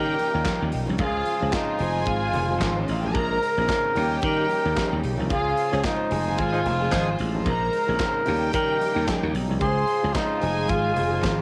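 Disco with a glamorous, sultry mood, this short cut from a longer piece rides a lightly swung groove over a looping cycle of seventh and eleventh chords. A breathy, whispered flugelhorn carries the melody up front, its soft attack and light vibrato giving the lead an intimate, smooth pop character, while a growly, bright slap bass punches alongside it, direct and amped. Behind them, a dark, woody string section with lush vibrato plays a distant second line, and a clear, floating string section holds soft sustained chords in the background. A warm baby grand piano adds accompaniment with audible action noise and long sustain, and from 0.2 seconds a modern acoustic drum kit with a punchy kick, medium-tuned snare, hi-hat and handclaps sits mid-forward with a rolled-off top, joined by very quiet, ringing congas played with soft hands. A mellow horn section punctuates the band accent with stabs between 5.7 and 7.1 seconds, and most parts carry the tape character of a dry home cassette recording.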